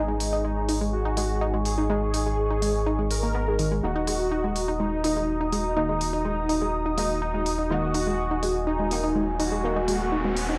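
A gritty, dry hardware sound with cassette-tape grain and a light digital ambience frames this dark, driving melodic techno excerpt at 124 BPM in a straight 4/4, moving from G#5 to D#m at 3.8 seconds. A thick, detuned unison lead carries the melody with vibrato, subtle chorus and tape echo, over a moody, slow-attack pad, a round, up-front analog bass touched by ring modulation, and bright, wave-folded pluck arpeggios with chorus and tape echo. Nasal, brassy synth stabs with phaser sit in the background, smooth layered electronic hi-hats keep time, and an electronic riser enters at 8.7 seconds.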